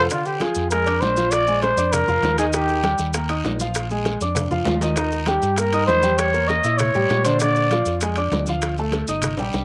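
Driving along at a straight 197 BPM in 4/4, this lively, danceable Afro-Cuban jazz excerpt in Bb mixolydian puts a dark, breathy, gritty growling trumpet up front with slapback echo, carrying the melody until 8.0 s. Beneath it sit a warm concert grand piano accompaniment moving through Bb7, Eb and Edim7 chords, a round, amped fingered electric bass, and a background bed of bright congas, tight high-tuned bongos, ringing metal-shell timbales and a raspy, saturated guiro, joined by grainy, close, dry maracas, with a drum fill at 4.4 s.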